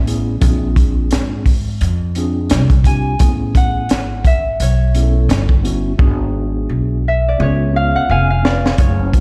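A ringing, fingerpicked concert harp carries the melody through an analog delay from the start, over a woody, growly pizzicato upright bass, with a clean, mellow tine electric piano and a crunchy, saturated breakbeat kit joining at 0.1 seconds. This cool, nocturnal jazz-hop cut runs at 86 BPM with a swung 16th-note feel. The kit sits up front with a punchy kick, high-tuned snare and dark, rolled-off top, and it plays a fill from 6.0 to 8.8 seconds under the harp solo as the chords move from A#9 and Amaj9 to G#m7b5 and C#7, all sounding as if played over a big sound system in a bare stone room.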